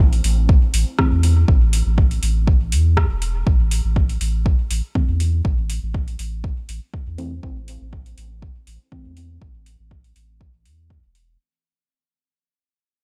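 A hazy, nocturnal dub techno excerpt built on a round, sine-like sub bass that pumps under an up-front deep kick, with tape-warmed metallic hats and rim clicks from the drum kit in studio reverb, while a soft, nasal chord stab drenched in chorus, phaser and dub echo flickers briefly at 1.0 seconds before returning from 5.0 to 9.1 seconds under a filter sweep as the whole piece fades out over a single A minor chord.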